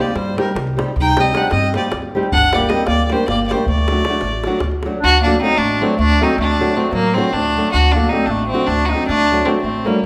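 Balkan folk in the manner of a wedding band, this fiery, virtuosic excerpt moves in an asymmetric 7/8 with a straight feel, cut from a longer piece. A clear, earthy fiddle carries the melody up front, one bowed player with light vibrato ranging high over the ensemble. Beneath it a clarinet plays a second line in a classical style, sounding distant and roomy, while a small fingerpicked nylon-string guitar supplies accompaniment and a woody, thumpy pizzicato upright bass anchors the low end over a Cm, Gm and D progression. A tight, close davul drives the rhythm until 5.0 seconds, after which the phrase repeats with the strings and clarinet carrying on alone. The whole group sits in the lush reverb of a recital hall, giving the ensemble a church-like ring around the fiddle's clear lead.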